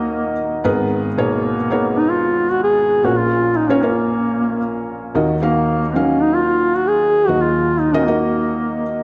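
A mellow duduk carries the melody up front, its vibrato and scooped notes giving the line a folk-style voice, while a punchy attack sits beneath a smooth top. This short pop fragment, cut from a longer piece, feels driving and dramatic in a straight four-beat metre. A felt-muted upright piano supplies the accompaniment from the first moment to the end at 9.0 seconds, sounding soft, intimate and vintage, its thin felt tone spread across a broad range from deep bass to high treble. The harmony moves through minor chords, passing through an added-ninth color before returning home. A wet scoring-stage reverb surrounds the pair, lending the close, up-front playing a spacious tail.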